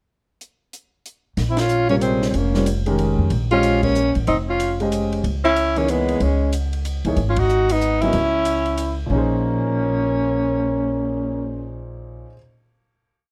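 A swung waltz feel in three drives this cool, intense modal jazz piece, with a compact cocktail drum kit opening on a pickup of dry, dark cymbals, punchy kick and high-tuned snare before dropping out at 8.9 seconds, while a woody, thumpy upright bass on gut strings plays a pizzicato two-feel. Up front, a clear alto saxophone with vibrato carries a motif-based melody alongside a breathy, whispered tenor saxophone with scooped notes and a soft attack playing a harmony line mostly in thirds. A warm upright piano with audible action noise comps in syncopated quartal voicings, and band accents punctuate the line before the group settles onto a final Bbm11 chord under light reverb in a dark production.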